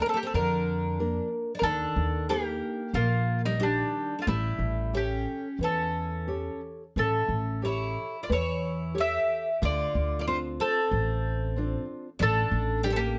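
A picked mandolin carries the melody from the first moment, its double strings sounding woody and up front under a plate reverb, in this longing, passionate fado-style ballad cut from a longer piece. A shimmering, octave-doubled twelve-string acoustic guitar adds a bright second line beneath it, sitting further back in the mix. A fingerpicked nylon-string guitar with fresh strings supplies classical-style accompaniment, and an upright bass, played pizzicato and thumpy, enters at 0.3 seconds to anchor the low end. The feel is rubato around 91 BPM in 4/4, with the harmony moving from Bbmaj7 through Ebmaj7 and a long A7 to Dm7 before settling on A7sus4 at 12.2 seconds. A light reverb gives the whole ensemble an intimate sense of space across its roughly 13 seconds.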